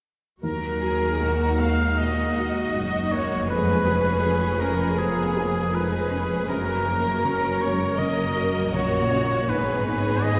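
Longing and moving, this cinematic excerpt in Eb minor drifts at a rubato 80 BPM, with a close-miked oboe singing up front over a dark violin section that shares its line with portamento, while a lush violin section carries the melody in the background above focused violas, rich cellos, a distant double bass section and a felt-muted upright piano with audible action noise, all bathed in a cathedral reverb with a 4.4-second tail as the chords move from Ebm to Db7/F, Gb and Abm.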